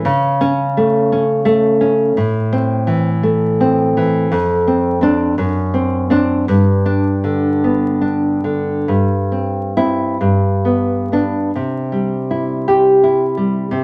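Light reverb and a vinyl crackle surround this short cut from a longer romantic piece for solo classical guitar, melancholic and passionate in a rubato 6/8. The nylon-string guitar sits up front with a warm, thumb-plucked tone, moving from A/C# through Am, Dm7/F and D7/F# to G and C/G. A new passage arrives at 11.5 s, settling on C.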